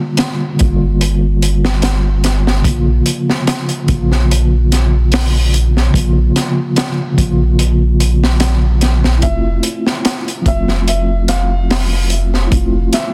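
A deep, round sine sub bass sits up front in this smoky, brooding trip hop piece at 73 BPM, lightly swung on the 16ths, under a crunchy breakbeat kit with a punchy kick, high-tuned snare and rolled-off top. A mellow tine electric piano carries the Gm7 and Bbm chords through tremolo, tape echo and a low-pass filter sweep, until a soft, felt-muted upright piano with audible action noise enters at 9.2 s over Fmaj7, its short line trailed by tape echo. Small room ambience and a dense, heavily limited master keep the sound close and intimate.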